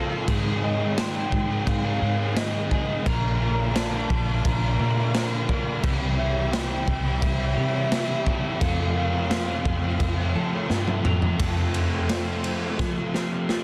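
A dense, heavily limited modern master gives this dreamy, blissful shoegaze and dream pop passage, cut from a longer rock piece, a packed sound at 86 BPM in straight 4/4. Two crunchy overdriven guitars drive the riff: one carries analog chorus, while the second sits in the background under reverse reverb. Below them, a dark, round, foam-muted electric bass anchors a progression of Abadd9, Bb, Cadd9 and F. A raw garage drum kit enters at 0.3 s, up front and gritty, with a punchy kick, a medium-tuned snare, a pumping small room and a rolled-off top, and it drops in fills near the close. Behind this wall, a clean, compressed twelve-string electric guitar picks arpeggios through lush chorus and analog delay, and a very quiet vintage string machine holds slow-attack sawtooth chords with a sub octave. From 0.6 s to 10.7 s, a hollow, woody synth lead with vibrato, chorus and delay floats a soft melody over the top.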